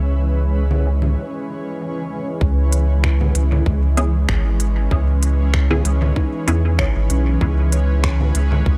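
At 96 BPM in 4/4 with a light 16th-note swing, this deep, meditative ambient dub excerpt in C# minor opens on a C#m7 chord: a round, up-front sub bass and a cloudy, evolving granular pad, with a breathy, wind-like tuned noise texture that lasts until 1.2 seconds. A tape-warm organic electronic kit of congas, finger snaps and crisp hats enters at 0.7 seconds, and a tight kick sits in the background from 2.4 seconds. A muted, wave-folded filtered chord stab with phaser and dub echo appears briefly, and a woody kalimba plays ringing arpeggios through dub echo from 6.2 seconds.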